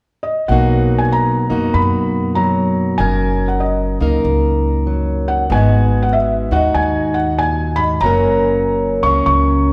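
Warm and gentle, this brief folk excerpt in B major moves at 96 BPM with a light swing on the eighth notes, drifting through Bmaj7, F#6, G#m7 and F# chords. A felt-muted upright piano carries the melody from 0.2 seconds with a soft, mellow, intimate tone and audible action noise, joined at 0.5 seconds by a full-bodied, fingerpicked plugged-in jumbo steel-string acoustic guitar and a woody, dark pizzicato upright bass, all three sitting up front. The trio is bathed in the lush reverb of a recital hall.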